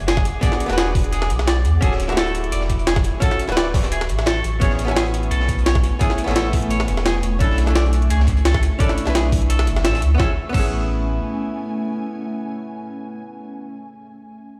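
Liquid drum and bass at 172 BPM in A major, this dreamy, lush excerpt opens on a drop that moves through E9, Dmaj9, Amaj7 and Bm11 before settling back on Amaj7 at 10.2 seconds. A deep, round sine sub bass sits up front beneath an ethereal, airy pad of detuned sawtooth and triangle tones with a sub octave, whose slow attack and long release are shaped by ensemble chorus, built-in reverb, tremolo and sidechain pumping. A clean, dark hollow-body archtop guitar plays picked accompaniment through tape echo, while a bright, twangy, slightly broken-up electric guitar adds arpeggios through delay. The beat layers a knocking, overdriven electronic kick with a gritty, pitched-up jungle sampler kit of crash, hi-hat and high-tuned snare, plus a smooth, saturated breakbeat kit with a rolled-off top tucked in the background. The drums drop out by 10.7 seconds, and the sub bass holds on until 11.2 seconds while the pad and archtop guitar ring on, the guitar lasting to 13.8 seconds, all set in light digital ambience as if played on a big sound system in a bare stone room.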